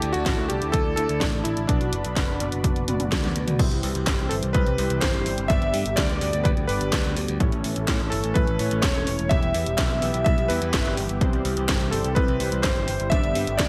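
A straight italo disco groove carries this melodramatic, nostalgic fragment, where a clangy, cutting electric grand piano with tape echo sings the melody over a smooth, chorused analog pad, dark detuned synth brass stabs in the background, a growly picked bass with tube saturation, a house kit with a cracking snare, handclaps and gated reverb, and a punchy electronic kick that joins at 0.3 seconds, with a drum fill at 2.9 seconds leading into chords that move from C through G, A and Em.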